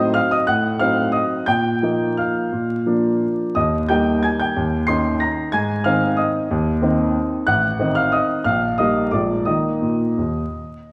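Vinyl crackle sits over a recital hall's lush reverb, with a 1.5-second decay, and the listener seems placed further back in the room. Within that space, a baby grand piano plays solo, its tone clear and open with long sustain, set up front in the sound. This short classical piano waltz in Eb major moves in 3/4 at 166-192 BPM, and its rubato feel gives it a sparkling, playful character. The piano spans a broad range from A1 to C7 across the whole 10.9 seconds. The harmony opens on a diminished chord and passes through suspended and seventh chords before resolving to Eb at 9.5 seconds, at the close of this passage cut from a longer piece.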